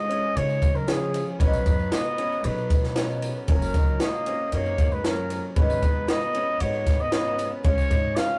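A straight 4/4 pulse at 115 BPM drives this anthemic indie folk excerpt in F# major, where a compact cocktail drum kit up front (punchy kick, high-tuned snare and dusky ride cymbal) and a woody, thumpy pizzicato upright bass entering at 0.4 s carry a chord cycle from C# through B, F# and G#m, while a distant, roomy classical-style trumpet sings the lead over a rich, bowed cello line with vibrato, arpeggios from a clear upright piano with audible action noise, a very quiet felt-muted upright piano, a faint, shimmering, octave-doubled picked twelve-string guitar and a jingly tambourine in the background, all within a moderate booth ambience and a rough rehearsal-room sound with warm saturation.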